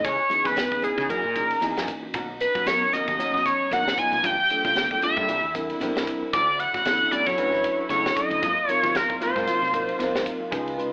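A 16th-note swing at 115 BPM in 4/4 drives this bright, soaring electric jazz fusion excerpt, set by a tight funk kit with a high-tuned snare, hard-handed congas in the background and a woody, round fretless bass. Up front, an overdriven synth lead screams a gritty, guitar-like melody through distortion, phaser and vibrato, over a mellow tine electric piano that adds a short fill at 5.5 seconds and clean, compressed stabs from a dark electric guitar. Muted, veiled strings enter at 2.1 seconds with soft-attack sustained chords as the harmony moves from Dbm7 through Gm7 and Dmaj9 to Ab13, the band heard live in a large room with an AM radio tint.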